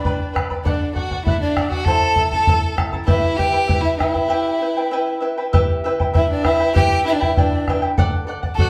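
A live Andean ensemble rings through a wet stone room in this earthy, wistful folk piece, cut from a longer performance, in E minor at 98 BPM in a straight 2/4. An airy, distant bamboo pan flute carries the melody with vibrato and a soft chiff, joined by a focused, close violin on a second line, while a bright fingerpicked charango shimmers up front on its double strings and a round bombo sits forward in the mix. A break arrives at 4.3 s before a new section begins at 5.5 s, with the harmony moving through G, D, Am and Em.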